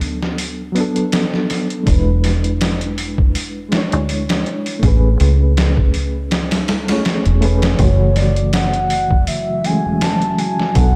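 A dreamy, reverb-soaked mix opens this smoky, hypnotic trip hop fragment in F# minor at 81 BPM, where a muffled, pitched-down sampler drum kit with a thumpy kick and overdrive sits up front over a round, foam-muted dub bass, while a reedy electric piano with tremolo, tape echo and a filter sweep moves through Bm7, E7, Amaj9 and F#m7, a pure, breathy sine lead with chorus and vibrato enters at 7.8 seconds, and a deep, detuned ambient pad joins in the background from 9.0 seconds.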